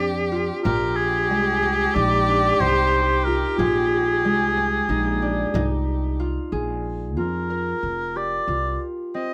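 Contemporary instrumental chamber music in 9/8, moving at 184 BPM counted in eighths with a straight feel, this short cut from a longer piece sounds shimmering and hopeful under light reverb. Up front, a warm oboe carries the melody between Ab4 and Eb5 with light vibrato in a classical style, sounding until 9.3 seconds. Beneath it, a rich, bowed cello holds a second line on G4 with a soft attack, portamento and expressive vibrato, its tone nasal and a little boxy, before dropping out at 6.2 seconds. A concert harp rings out fingerpicked arpeggios, while a pizzicato upright bass on gut strings gives a woody, dark, thumpy low end from F1 to F2. A small, bright frame drum played with hard hands sits close and dry in the background and stops at 6.0 seconds. The harmony drifts from a rootless Bb6 through Fmadd9/Bb to Bb5 and Fsus2 as the opening section gives way to a brief second one.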